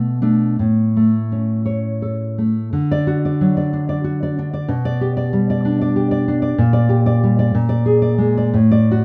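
This is a rough home demo with a moderate studio ambience, a short room decay that sits close around a single up-front nylon-string guitar. The piece is a tender, romantic work for solo classical guitar in D major, moving in a rubato 6/8 at roughly 54-65 BPM counted in dotted quarters, with the instrument tuned to A4 = 441 Hz. The guitar has a dark, full-bodied, deep classical tone, its thumb-plucked sound ranging from A2 up to D5 and carrying a warm feeling throughout the 9-second fragment of a longer piece. It opens on Bm7 and moves to A, then at 2.7 seconds a new section settles onto D before passing through G/B. From 6.6 seconds the harmony shifts through Gm/Bb into Bb7 as the passage breaks off.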